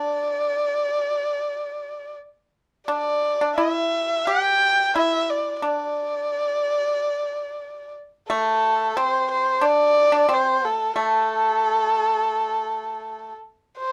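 An erhu and a pipa begin together in this graceful, pastoral Chinese chamber piece, moving with a free, rubato feel. A single erhu carries the melody up front with a dark, intimate tone, light vibrato, soft attacks, portamento and an airy bow. Beneath it the dry, percussive pipa, played with fingerpicks, adds a second line until 13.3 seconds, all set in moderate studio reverb with a warm production.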